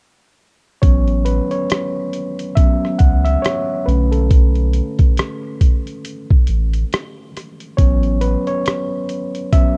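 Lo-fi hip hop at 69 BPM in A major with a swung, dreamy and cosy feel, this excerpt sets a reedy, overdriven electric piano through a combo amp, softened by cassette tape and a low-pass filter, as the featured solo from 0.8 to 9.8 seconds over an A69 to Bm7 progression, backed by a deep, round dub sub bass that drops out at 8.4 seconds and an up-front, pitched-down boom bap kit of thumpy kick, hi-hat and rim click dusted with 12-bit sampler grit, all in a dark, dry mix.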